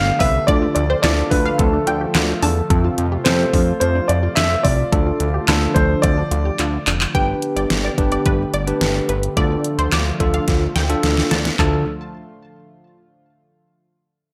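A bright 1980s-style digital production with a moderate plate reverb gives this melancholic, driving synth-pop excerpt its glossy sheen, moving at 108 BPM in a straight 4/4 in D dorian. Up front, an overdriven, layered pop drum kit with a knocking kick, deep snare, hi-hat, handclaps and toms sits in gated reverb, while a fat, detuned analog bass with a sawtooth edge and wave-folded bite anchors the low end. A natural concert grand piano with deep bass carries the melody through lush chorus and digital delay until 6.8 seconds. Around it, a smooth, dark analog pad holds sustained chords in the background, a bell-like tine electric piano adds clean, direct accompaniment, and a very quiet, punchy unison pluck spins arpeggios. A second detuned pluck with a noise layer traces a higher line through analog chorus and delay, returning at 7.1 seconds as the harmony shifts from Dm and F to Gadd9. Drum fills mark the turns, the last starting at 10.5 seconds.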